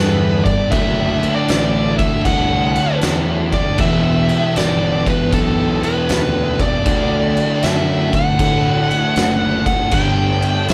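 A live-in-one-room sound with moderate large studio reverb frames this brooding, hypnotic stoner and doom metal excerpt at 78 BPM with a swung feel, where an up-front dark fuzz lead guitar carries the melody over two background thick fuzz guitar riffs, a very quiet double-tracked crunchy overdriven guitar, a growly, punchy fuzz fingered bass, a very quiet vintage string machine cello pad with a slow attack and ensemble chorus, and an oversized low-tuned drum kit with a fat snare and pumping room sound that enters at 0.5 seconds, all moving through G, D/F#, Em and D.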